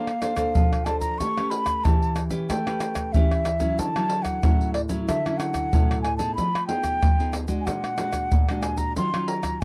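A breathy, mellow concert flute carries the melody between D5 and C#6, its tone marked by vibrato, a crisp attack and rolled-off highs that give the line an expressive, playful lilt. Beneath it, a full-bodied, fingerpicked nylon-string guitar sits up front with a deep classical sound, moving through rich extended harmonies from Bbmaj9 and A9 to Dmaj9, then Fm7b5 and Bbaug7 before landing on Ebm9 at 9.0 seconds. From 0.1 seconds a close, acoustic percussion section of tube shaker, pandeiro, tamborim and a tight surdo drives the festive samba and choro groove at 93 BPM in a straight 4/4. The dry, close studio sound has a 1970s character with little reverb, and the tuning sits at A4 = 442 Hz. This short passage is cut from a longer piece and runs 9.6 seconds.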